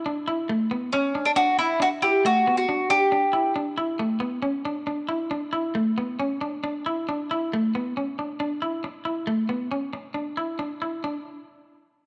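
A picked electric guitar, warm and slightly broken-up, opens this sunny, danceable highlife cut in D major at 137 BPM and carries the accompaniment until 11.2 seconds through D-based chords with a brief move to G, while an up-front mandolin, mellow and round with its double strings, plays the melody from 0.9 to 3.5 seconds, all set in a wet echo-chamber reverb.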